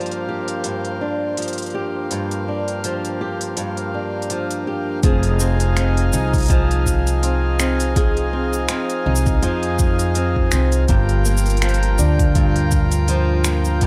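A digital ambience surrounds this delicate, autumnal folktronica excerpt, where an up-front, fingerpicked flamenco guitar plays arpeggios through a delay over a reedy, breathing harmonium holding sustained chords. Tape-warm electronic drums, re-recorded in a large room, supply finger snaps, smooth hi-hats and shaker with a gentle swing, while a very quiet, flickering granular texture hovers until 5.0 s. At that point a deep electronic kick enters alongside a woody, thumpy pizzicato upright bass on gut strings placed up front, grounding the piece to its close.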